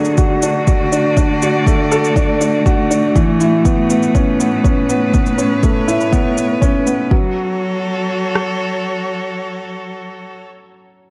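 Dark, warm production in a moderate scoring-stage reverb frames this melancholic, cinematic piano and strings electronica, cut from a longer piece at 121 BPM in F# minor: an intimate grand piano riff with audible action noise and digital delay sits up front over a clear, smooth-topped string quartet holding bowed, vibrato-laden sustained chords with sidechain pumping, while a layered deep house kit of deep, tape-colored kick and rim click enters at 0.2 seconds beside an electronic shaker that stops at 7.0 seconds, as the harmony moves from D through Aadd9 to F#m.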